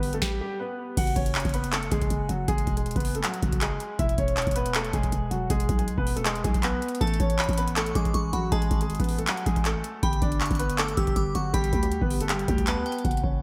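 A half-time trap groove in 4/4 drives this dark, hard-hitting hip hop excerpt, with a booming analog drum machine of deep kick, crisp snare, handclaps and metallic hi-hats under gated reverb, a growling, buzzy 808-style bass, and a stop from 0.2 to 1.0 seconds before the full pattern lands. An intimate concert grand piano carries the melody up front, its audible action noise and long sustain softened by lush chorus, a low-pass filter and delay, while a crystalline FM synth bell adds a quieter second line from 7.0 to 13.0 seconds. The chords move from G to E, then A and back to G, set in bright 1980s-style digital production with light reverb, and the hi-hats drop out for the final moments from 13.0 seconds.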